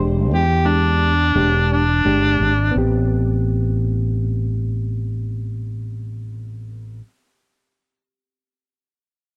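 A straight-eighth soul blues groove in 4/4 carries this soulful, mournful excerpt, with a fretless electric bass sitting up front, direct and amped, under a reedy, lightly overdriven electric piano heard through its built-in speakers. From 0.3 to 2.7 seconds a gritty, amplified harmonica takes a punchy solo over E7#9, full of vibrato and tongue slaps. At 2.7 seconds the harmony moves to Am9 as bass and piano continue through a small-room ambience until 7.0 seconds.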